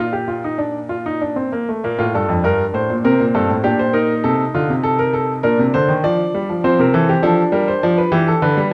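Set in a straight, steady four-beat pulse, this short passage, cut from a longer piece, is a driving, serious baroque-style fugue in three voices for solo baby grand piano. The piano sits up front with a clear, intimate tone, audible action noise and long sustain, its lines ranging from the low bass into the upper middle register. The recital hall adds a wet, 1.5-second tail within a dark production; a new section begins at 1.8 s, and the harmony arrives on G7 at 7.8 s before the cut.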